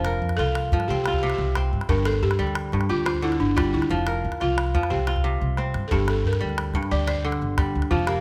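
A crisp, ringing kora sits up front, its fingerpicked arpeggios spilling across the whole 8.2-second passage of this reflective, hypnotic West African string and xylophone music, which moves at 120 BPM in a straight 12/8 in G dorian. Alongside it, a buzzing, close-miked balafon played with soft rubber mallets carries the woody melody, while a thumpy pizzicato upright bass with steel strings anchors the low end, also up front. A deep, dry calabash keeps the pulse and breaks into a brief fill between 5.2 and 5.9 seconds, all set in light reverb in this short section cut from a longer piece.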